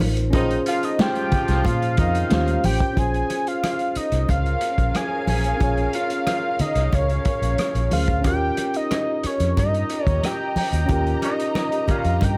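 Muffled, lo-fi small-room warmth frames this smooth, lush 1970s-style soul excerpt at 91 BPM, where a fat sawtooth analog lead with chorus and vibrato sings up front over a clean tine electric piano, a round foam-muted fingered bass, a punchy vintage drum kit and background congas, with tight horn stabs at the opening and again near 11.2 seconds, dark sul tasto strings entering at 4.3 seconds, and a band accent from 10.9 seconds over Bbm9, Eb13, Bbm7 and Eb7 chords.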